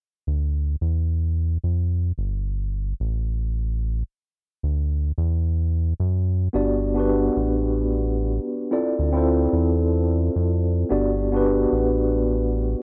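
Swung sixteenths in 4/4 carry this smooth, warm sunset chillout fragment, where a round, deep analog bass with a fast attack and dark sustain sits up front from 0.3 seconds, joined at 6.5 seconds by a mellow, clean tine electric piano heard through built-in speakers with digital delay, the whole mix bathed in light reverb and worn cassette tape with warbly pitch drift and a dulled top end.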